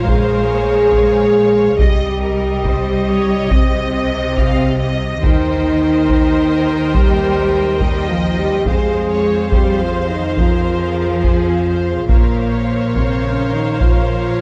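A steady, straight 4/4 pulse at 70 BPM drives this relentless, dramatic cinematic score in F minor, with a compressed, saturated taiko ensemble struck with heavy sticks entering at 0.1 seconds and pounding forward prominently in the mix. Above it, two lush violin sections carry the melody and a second line with smooth vibrato, while a focused, close-sounding viola section fills in the accompaniment. A mellow French horn section holds sustained chords near the front of the balance, and a rich, distant cello section joins a dark double bass section, its soft attack and expressive portamento anchoring the low end. The harmony moves from Bbmadd9 through Cm, Eb6 and Fm before returning to Bbmadd9, and every part plays through to the close at 14.4 seconds. A moderate concert hall reverb and a dark production give the cut, taken from a longer piece, a heavy, epic weight.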